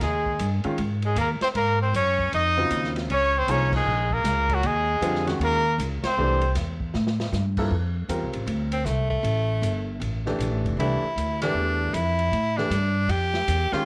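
An edgy, forceful tenor saxophone with scooped notes and vibrato carries this searching, spiritual modal jazz excerpt, weaving a second line beneath a clear trumpet melody with light vibrato and slapback echo until the trumpet stops at 6.5 seconds, then stepping up to solo from 7.7 seconds over woody pizzicato upright bass, a clear baby grand piano comping with short sustain, and a swinging small-room drum kit with dark cymbals and a boomy kick that punctuates band accents and a brief fill, all set in studio reverb.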